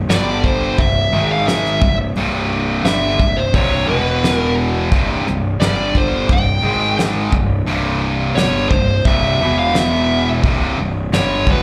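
A straight 4/4 pulse at 87 BPM drives this dark, epic heavy metal excerpt, with a soft brush kit giving a fat snare, tight kick and hi-hat under chords cycling through G5, C, Ab5, C5 and E5. A bright, high-gain distorted guitar riffs up front over a second, overdriven guitar in the background, both carrying slapback echo. A growly fuzz bass underpins them, while a dark, high-gain lead guitar sings a melody from B4 to G5, entering at 0.1 seconds with slapback and tape echo, all heard as a live gig through the venue's PA with a touch of club reverb.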